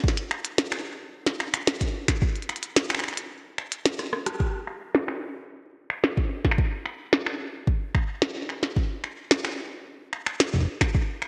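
A deep electronic kick drum opens this intricate, eerie IDM excerpt at 0.0 seconds, set in a straight 4/4 at 110 BPM. A glitchy drum kit joins almost at once, with finger snaps, clicky hats, rim clicks and a tiny snare, each of its hats and snare passed through a low-pass filter. Both drum parts sit up front and carry the character of being re-recorded in a small room, while a moderate, lush hall reverb surrounds them in a bright, 1980s-style digital sheen. A break arrives at 3.3 seconds, closed by a drum fill and a band accent. From 4.4 seconds a new section begins, and a filter sweep on the drums runs until the cut.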